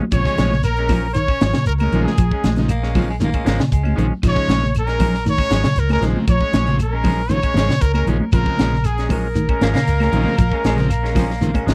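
A bright trumpet with tape echo carries the melody in this driving, intense afrobeat excerpt at 117 BPM in Bb minor, joined by a very quiet clear second trumpet over a Bbm7 chord. A round, punchy, foam-muted fingered bass sits up front with a tight funk drum kit (high-tuned snare, tight kick, hi-hat), while a semi-hollow guitar plays clean picked stabs and a darker, slightly broken-up guitar picks arpeggios beneath a buzzy, overdriven combo organ. Soft-handed congas, a grainy shekere and faint woody claves fill out the percussion, a raspy, gritty baritone saxophone adds a second line at 2.7 s and again at 9.6 s, and a drum fill closes the dry, close 1970s-style recording at 11.4 s.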